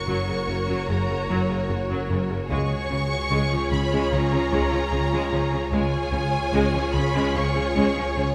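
A wet scoring-stage reverb wraps this eerie, uneasy stretch of suspense film score, cut from a longer piece and moving at 74 BPM in 4/4 over a shift from Gb to Db at 2.5 seconds. Distant, smooth violins carry the melody high above a lush, expressive second violin line and an intense, clear viola accompaniment, while a very quiet, bright harp rings in the same upper register. Underneath, a thick, saturated sub bass drones, a round, wave-folded analog bass plays a mellow riff from 0.1 seconds, bowed cellos with portamento sit in the background, and very quiet, focused double basses hold the low end.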